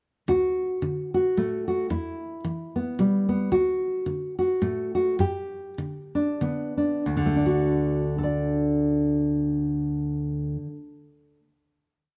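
A solo nylon-string guitar opens this short, gentle folk piece in a lilting, swung three, its full-bodied, up-front tone carried by an alternating, palm-damped thumb bass and faint finger squeak as it moves through D, Em and G, slowing from 3.5 seconds before settling on a deep closing D chord that rings from 7.1 seconds, all captured by close, detailed microphones with light reverb for a pastoral feel.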